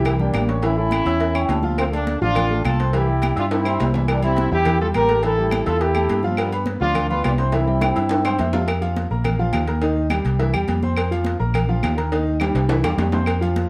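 A straight 4/4 salsa groove at 209 BPM, built on high-tuned congas, ringing agogo bells and timbales, woody claves, and tight cowbell and bongos, carries this joyful, sunny excerpt, as a round, dark fingered electric bass sits up front beneath a woody, long-sustaining upright piano, while a vibrato-rich trombone section in plate reverb leads the melody until 8.4 seconds, and a delicate, bell-like large celesta adds brief second lines at 1.1 and 7.7 seconds.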